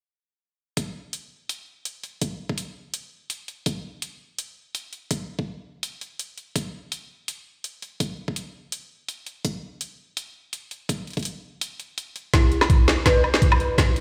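Half-time drum and bass with a tense, cinematic mood, this excerpt opens on an overdriven, knocking electronic kick and an up-front kit of woody snare, bright hats and woodblock, the whole groove carrying a light swing and a stony room echo. The kick drops out briefly just before 12.3 seconds, when a drum fill drives a build-up and an eerie, inharmonic synth bell enters with arpeggios through chorus, phaser and dub echo over an E minor chord. A deep, moody, very quiet ambient pad slips in with sustained chords at 13.3 seconds.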